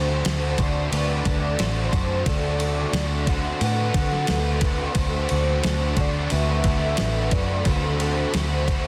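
A dense, heavily limited modern master wrapped in digital ambience frames this short, blissful and wistful slice of shoegaze-leaning dream pop rock, moving at 89 BPM in a straight 4/4 and tuned to A4 = 437 Hz over a D7 chord. A velvety, detuned sawtooth synth lead carries the melody with vibrato, chorus and tape echo, its smooth, mellow tone sounding alongside a very quiet vintage string machine voiced as cellos that holds soft-attack sustained chords with a long release. Two overdriven electric guitars play a riff: one biting and set in the background with ensemble chorus, the other compressed and treated with reverse reverb. A bright, boxy twelve-string parlour acoustic adds shimmering, octave-doubled fingerpicked arpeggios, complete with finger squeak and the sheen of fresh strings, in the background with ensemble chorus and tape echo. Up front, a dark, round, foam-muted picked bass sits beside a crisp 8-bit drum machine that comes in at 0.2 seconds with a thumpy kick, a medium-tuned snare and ride cymbal, its tape-warm sampler character re-recorded in a small room.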